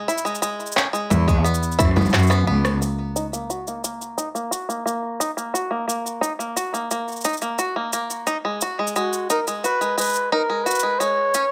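Bright, twangy bluegrass banjo arpeggios, fingerpicked and percussive, open this delicate folktronica excerpt at 0.0 seconds, softened by a low-pass filter and set in plate reverb and digital delay. A tape-warm electronic kit of shaker, handclaps, congas and rim click sits up front almost at once, re-recorded in a small room for a produced, close feel, and a tight electronic kick briefly joins it. At 1.1 seconds a single bowed cello enters as the bass, nasal and boxy with vibrato, portamento and tube saturation, singing expressively for a brief phrase while a drum fill and band accent mark the move into the second section. There the chords fall away as the banjo and percussion carry on, the banjo now under a filter sweep. At 9.0 seconds a close-miked solo flugelhorn takes up the melody in a jazz style, mellow with vibrato and bathed in plate reverb, and the chords later settle onto a rootless E6.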